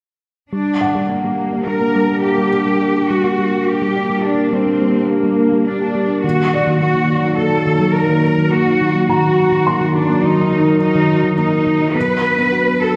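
Opening at 0.5 s with a lush, bowed cello section carrying the bass line up front alongside round, tine-like synth-pluck arpeggios washed in chorus and delay, this vast, brooding cinematic excerpt in 5/4 at 105 BPM in G harmonic minor soon gathers a deep, detuned analog pad of sustained chords and a soft, felt-muted upright piano with audible action noise, moving from Gm to Ebm at 6.2 s and on to Bm/F#, all set in the wet reverb of a scoring stage and heard from further back in the room.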